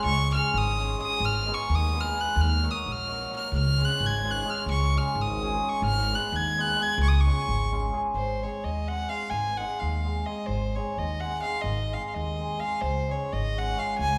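Balkan wedding-band folk, festive and wild, races along at 258 BPM in 5/8 with a rich, reedy gut-string violin carrying the melody up front, a shimmering hammered cimbalom ringing out the accompaniment, and a growly, woody pizzicato upright bass driving the low end, all heard in a cut from a longer piece where a wet recital-hall reverb lends churchly space and the key shifts from Db mixolydian to Ab mixolydian at 8.1 seconds.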